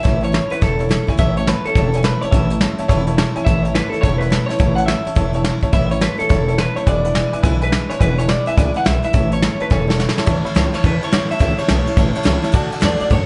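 A retro, rowdy rockabilly band launches together in A major at a brisk 211 BPM, swinging its eighth notes in 4/4, and the upright bass joins a moment later at 0.1 seconds. A twangy, slightly broken-up electric guitar through a small old amp carries the picked melody with a bright edge. Beneath it, a jangly, detuned honky-tonk upright piano and a full-bodied picked steel-string acoustic guitar, with audible finger squeak, fill out the accompaniment. The woody, growly pizzicato upright bass sits low under a soft brush kit placed up front, whose smooth, dark sound pairs a tight kick and medium-tuned snare with hi-hat and ride cymbal. The piano throws in a short fill at 2.9 seconds, and a drum fill at 9.7 seconds leads into a new section as the chords move from A through E7 and back to A, landing on D near the end. The band plays live in one room with light reverb and a mellow, softened top end, in a passage cut from a longer piece.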